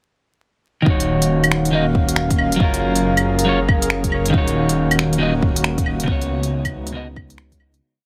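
Future garage piece in Eb minor at 138 BPM with a swung sixteenth feel and a melancholic, wistful mood, where a slightly broken-up electric guitar plays held chords with syncopated pushes through analog delay over a breathy, chorused pad and a dark detuned saw bass with tube saturation, all three pumping against a muffled two-step kick while a deep house kit adds claves, finger snaps and smooth hi-hats in a skittering shuffled beat, the whole thing dry and squeezed into a heavily compressed radio sound with vinyl crackle as it moves through Ebm7, Gbmaj7 and Db7sus4 before fading out from 5.5 seconds.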